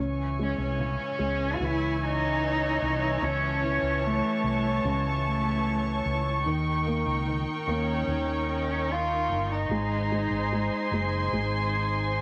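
Moderate spring reverb and small room ambience frame this melancholic, emotional pop excerpt, where veiled con sordino strings hold sustained chords up front over a soft, intimate felt-muted upright piano and a round, amped fretless electric bass, while a woody, distant solo cello with vibrato carries the melody from 0.4 s to 11.1 s across a C#m, A, D#7, G# progression.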